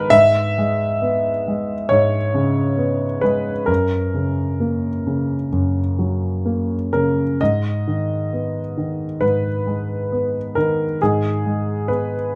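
A rubato pulse around 67 BPM in 4/4 drifts through this short, melancholic excerpt of neoclassical minimalist piano in G# minor, moving from C#m7/G# to F# at 3.7 seconds and settling on G#m at 7.4 seconds. A lone concert grand plays throughout, reaching from F#2 up to E5, its deep bass and natural, intimate tone placed up front with the action noise clearly audible. A wet small-room reverb and a rough home-demo mix give the piece a close, private feel.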